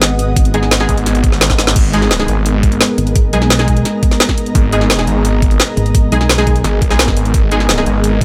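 A growling, detuned saw bass snarls up front through distortion and tube saturation from 0.9 seconds, taking over from a pulsing, heavy wobble bass that returns alongside it at 3.0 seconds in this dark, aggressive drum and bass cut in G# minor at 172 BPM. An overdriven, knocking kick drives a kit with a woody snare and bright hats, a drum fill lands at 1.5 seconds, and bold, punchy orchestra-hit-like synth stabs ring out with reverb and digital delay. Beneath it all, a deep, moody analog pad sustains chords moving from G#m to G#madd9 while a mellow, ethereal airy pad with tremolo floats in the background, both pumping with the sidechain.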